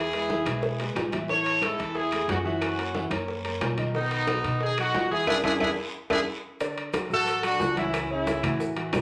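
A brilliant, punchy horn section leads this sunny, danceable salsa excerpt at 180 BPM, riding up front over a present, polished upright piano with long sustain and a dark, thumpy pizzicato upright bass on gut strings. Ringing, compressed timbales, tight high-tuned bongos, soft-handed congas, woody claves and a raspy guiro fill out the percussion, with drum fills and a band accent leading into a new section at 6.6 s, where grainy maracas join as the guiro has just dropped out. The chords move from E through Amaj7, F#7 and B7 to E7, then Dmaj7 and F#m7/C#, all set in a large studio reverb.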